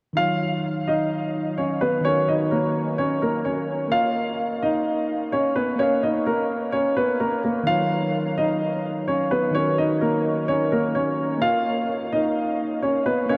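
A mellow tine electric piano opens this melancholic, eerie hip hop excerpt at 0.1 s, its clean, direct tone carrying an analog chorus as it plays accompaniment from Eb3 to F5. A moment later, at 0.2 s, a dark grand piano enters up front with the melody, its natural sound and short sustain trailed by analog delay across a range of Bb3 to F5. The tempo sits at 128 BPM in 4/4 with a half-time feel, giving the Eb minor piece an unhurried, drifting pulse. The harmony alternates between Ebm7 and Bbsus4, and the progression repeats through a single section. Both pianos continue until 13.4 s, soaked in a huge ambient reverb with an 8.6-second tail that gives the mix a dreamy, haunted atmosphere.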